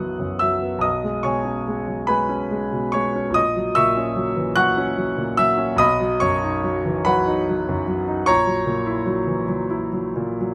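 A warm, polished grand piano carries this serene, dreamy romantic nocturne alone, ranging from A#1 up to F#6 in B major. In 6/8 at about 48 dotted-quarter beats per minute, the rubato phrasing keeps the pulse uneven as the harmony moves between B, C#5/B and F#7/A#. Close, detailed microphones place the piano up front with light reverb, in a brief excerpt cut from a longer piece.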